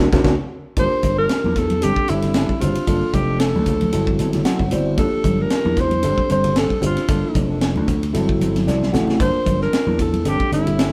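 Slick and funky, this electric jazz fusion excerpt opens with a band accent, a drum fill and a tine electric piano fill before a breathy alto saxophone with vibrato takes the up-front melody at 0.8 seconds over mellow, clean electric piano chords, dark fingered electric guitar stabs in the background, a punchy amped vintage slap bass, a tight funk drum kit with a high-tuned snare, and thick-skinned congas set back, the band playing live in a moderate stone room with a lightly swung sixteenth-note feel.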